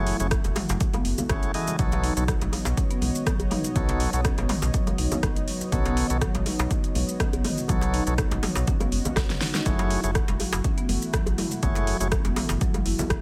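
Afro house at 122 BPM with a spiritual, warm mood and a light 16th-note swing, this excerpt sets a punchy, overdriven electronic kick and a deep house kit with fat snare and metallic hats under ringing, high-tuned congas and a tight, cracking djembe, while a round, deep analog bass, woody soft-mallet marimba arpeggios with dub echo, lightly overdriven tonewheel organ stabs, and a moody, detuned analog pad all pump against the kick over F#m9 and B9 chords, with a drum fill at 9.2 seconds returning to F#m9 in a digital ambience.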